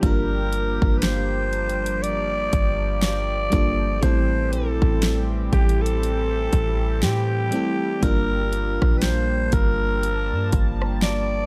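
A growling alto saxophone carries the melody up front, its raspy, gritty subtone tone and scooped notes giving this contemporary R&B excerpt a moody, longing, jazz-inflected voice, with digital delay trailing its lines. Beneath it, an FM electric piano supplies glassy, bell-like accompaniment, full-bodied and chorused. A chorused pulse-width pad holds sustained chords with a shimmering, retro sheen and a soft attack. A deep, boomy 808-style bass sits prominently with a dark, decaying tone. The electronic pop drum kit is punchy and produced, with a fat snare, rim clicks and bright hats, set close in a dry mix as the harmony moves from Gm7 to Am7 at 4.0 s and settles on Gm9 at 8.0 s, with a relaxed swing.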